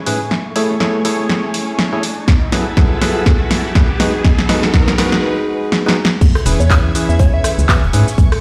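The recording has the roomy sound of a big system playing in a bare space, with a large studio reverb around this short uplifting, joyful cut of piano house in E major at 122 BPM, swung on the sixteenths. A shimmering, vintage string machine holds violin chords in the background with a filter sweep through the build-up, while a hollow, dark, organ-like FM bass and a percussive organ stab with chorus and tape echo drive the harmony from Amaj7 through F#m11 and G#m7, with the strings, bass and stab all pumping against the sidechain. An up-front house kit with a punchy snare, bright hats, handclaps, rim click, shaker and crash plays fills through the build, a background riser climbs from 0.3 to 5.2 seconds, and a punchy electronic kick joins at 2.3 seconds. After a brief break the drop lands at 6.2 seconds on E6, where a quiet acoustic kit of hi-hat and a medium-tuned snare played with bundle sticks slips in behind. 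A round, gentle, warbling synth lead with a keys-like strike adds a short phrase between C#5 and E5 just after, before the passage cuts off.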